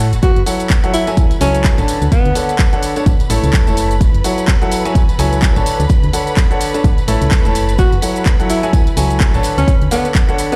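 Soulful and bittersweet, this piano house piece in F# minor moves at 127 BPM with a swung groove, cycling through F#m7, Dmaj7 and A as a clear concert grand piano riff with long sustain and delay pumps against a dark, round FM bass and lush, distant bowed strings in the background. A punchy, up-front electronic kick drives a house kit of handclaps, warm hats and shaker, with a very quiet, saturated tambourine underneath. A jazz-style alto saxophone with subtone, vibrato and scooped notes plays a delayed melody from 0.2 to 2.6 seconds and returns at 7.8 seconds, all heard through a big sound system in a bare stone room.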